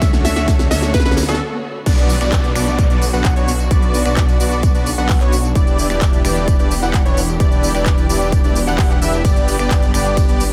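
Euphoric and emotional, this festival progressive house passage in B minor runs at 130 BPM in a straight 4/4, cut from a longer piece. It opens on a build-up with a drum fill from the big-room kit, whose huge snare, crisp hats, handclaps, finger snaps, tambourine, ride and crash sit beside a punchy, up-front electronic kick. A glassy, crystalline wavetable pluck with chorus, cassette tape character and dub echo flickers briefly over a Dmaj7 before a short break. At 1.9 seconds the drop arrives on Bm, where a thick, warbling unison lead with a nasal, vintage edge plays arpeggios with sidechain pumping and dub echo, moving through Em7 and on to G. Underneath, a dense, compressed supersaw riff carries 12-bit sampler grit and dub echo, a lush detuned saw bass with chorus anchors the low end, and a clear, bowed studio string section holds sustained chords in the background, all three pumping to the sidechain. 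A very quiet riser and downlifter colours the first few seconds, and the mix stays dry, with little reverb.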